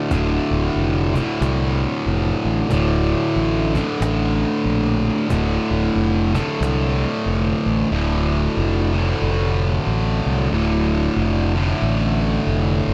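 A swung 4/4 groove at 92 BPM drives this sludgy, ominous stretch of stoner and doom metal in D minor, cut from a longer piece and sitting on a single D minor chord. A bright, double-tracked fuzz guitar plays the picked riff up front, compressed and distorted, while a punchy fingered electric bass with overdriven fuzz holds the low end, and a snappy cajon with snares sits in the background until 7.2 seconds. The sound is a dry, close 1970s-style studio recording, with the cajon carrying a touch of live room.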